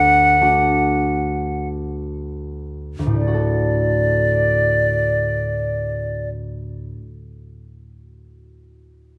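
A moderate recital-hall reverb surrounds this short fragment of a pastoral, nostalgic Celtic slow air in D major, moving freely in 3/4 at roughly 38-53 BPM and slowing down through its first 3.2 seconds. Up front and close-miked, an airy wooden flute carries the expressive, tongued melody with a straight tone, while a concert harp sits beneath it with bright, ringing thumb-plucked accompaniment. The flute falls silent at 6.3 seconds, and the harp continues alone until 7.0 seconds.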